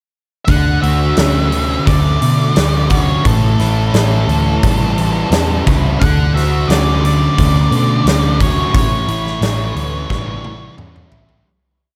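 Hazy and blissful, this brief shoegaze and dream pop rock piece moves at 88 BPM in D major, swaying between Dmaj7 and A7. A thick, double-tracked fuzz guitar sits up front with picked arpeggios drenched in lush chorus, while a dark octave-fuzz lead guitar, quieter in the mix, traces motif-based song phrases through slapback echo. Beneath them, a round, foam-muted vintage bass drives eighth notes and a huge arena drum kit, with a punchy kick and medium-tuned snare in a big, natural room, carries the groove until the piece fades out from 8.7 seconds and a drum fill starting at 10.1 seconds closes it.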